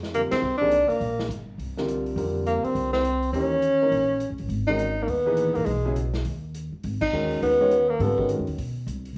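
A brisk swung 4/4 pulse drives this hypnotic, intense modal jazz, with a vintage drum kit of dark cymbals, punchy kick and pumping small-room sound sitting low beneath a woody, steel-strung pizzicato upright bass. Up front, a tenor saxophone carries the solo melody with light vibrato and a smooth top, while a concert grand piano accompanies with an intimate, natural tone, deep bass and audible action noise. The band hits accents at 0.3 and 7.0 seconds, the harmony settles onto a minor ninth chord at 4.5 seconds, and a moderate studio reverb surrounds the group.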